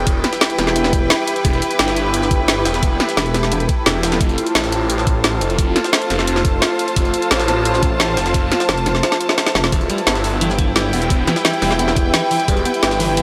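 Drenched in a huge, dreamy reverb, this cut from a longer piece of dark technical drum and bass feels futuristic and aggressive. An overdriven electronic kick knocks up front beside a layered kit with a woody snare and bright hats. A gritty, pitched-up jungle sampler-style kit sits very quietly underneath. A swirling, thick detuned saw bass runs through phaser and overdrive, pumping to the sidechain alongside a deep, moody ambient pad and a rich studio string section bowing smoothly with light vibrato. A metallic, wobbling FM bass bursts in briefly, a faint electronic impact and swell barely register, and the kick drops out for a drum fill at 9.0 seconds. From 9.7 seconds a clean, picked electric guitar plays arpeggios through delay.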